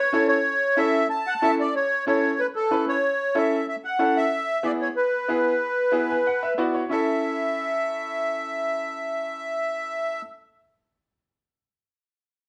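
A straight, brisk 4/4 pulse at 186 BPM drives this sunny, festive Latin piece in A major, cut from a longer work. Up front, the accordion carries the melody with a reedy, sweet tone, colored by a light tremolo tuning. The bright upright piano accompanies it with a woody, polished sound and long sustain, then adds a fill from 5.9 to 6.9 seconds. The harmony rests on A, moves to E, and settles back on A as the final section arrives at 6.9 seconds. A wet studio reverb surrounds the pair, and the recording is heard from further back in the room.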